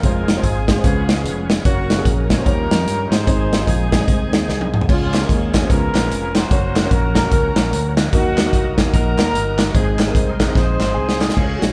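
A swung 4/4 groove at 148 BPM drives this uptempo gospel excerpt, its uplifting, soulful mood carried by an acoustic studio drum kit placed up front, with a punchy kick, medium-tuned snare, hi-hat, toms and crash in a pumping room, plus fills at 4.5 and 10.6 seconds. A round fingered electric bass anchors the low end, while a smooth horn section with light vibrato sings the melody over chords moving from Fm through Db7, Gb and Eb9 to Ab. Behind them, a woody, slightly detuned upright piano with audible action noise plays accompaniment, and a shouting, lightly overdriven tonewheel organ holds sustained chords through a slow rotary speaker and chorus vibrato, complete with key click. Hollow, distant group handclaps join very quietly at 5.1 seconds, and a clear grand piano adds a brief melodic phrase near the close at 10.9 seconds. The band sounds as if playing live together in one large studio room with moderate reverb.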